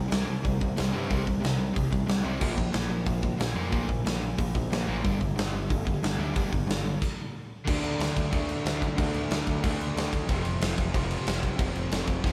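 A raw, aggressive punk rock excerpt charges along at 183 BPM in 4/4 with a straight feel, centred on D minor and tuned slightly sharp of standard pitch. An overdriven, double-tracked semi-hollow guitar drives the riff up front, its picked tone warm with a hollow-body character as it moves through power chords on C, Bb and G. Underneath, a growling picked electric bass adds a dark, round, overdriven low end, while a big acoustic rock kit with a tight kick, medium-tuned snare, hi-hat and crash cymbal sits forward in a large-sounding room. The band breaks for a stop at 7.0 seconds, then comes back at 7.7 seconds into a new section built on D and F chords. Light reverb gives the recording the feel of a group playing live together in one room.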